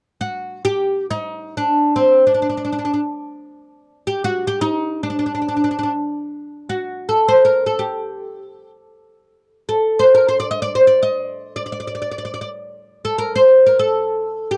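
A solo oud carries the melody in free time, its plectrum-plucked double strings giving a bright, woody tone with a deep body as it sits up front from 0.2 s to 14.6 s. This short excerpt of Arabic music in D maqam hijaz has a longing, melancholic mood, the fretless instrument's line ranging from C4 to Eb5+25c. The sound is dry and close, with little reverb, in the manner of a 1970s studio recording.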